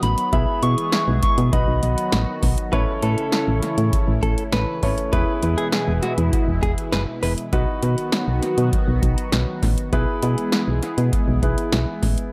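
A straight 4/4 pulse from a dry, up-front electro analog drum machine, with its deep kick, punchy snare and metallic hats, drives this upbeat yet wistful synth-pop fragment, anchored by a round, dark FM bass and filled out by a clear, intimate grand piano and a swirling, detuned analog pad, while a gentle, warbling struck synth lead sings only until 2.4 seconds and a clean, compressed direct-recorded electric guitar with harmonic tremolo adds a second line from 2.7 to 7.3 seconds, within a light, echo-heavy mix.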